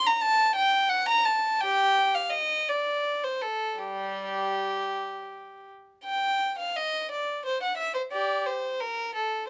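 Moving in a slow, rubato 6/8 at about 51-60 beats per minute counted in dotted quarters, this brief excerpt from a longer baroque-style suite movement unfolds with a grave, introspective gravity in G minor. A single unaccompanied violin carries everything from 0.0 to 9.5 seconds, bowed across a span from G3 up to Bb5. Its gut-string tone is rich and reedy, played in period style by one player and captured close and up front. A light reverb gives the instrument a modest sense of space around its sound. The passage presents its opening phrase and then returns to it at 6.1 seconds, breaking off as part of the larger movement.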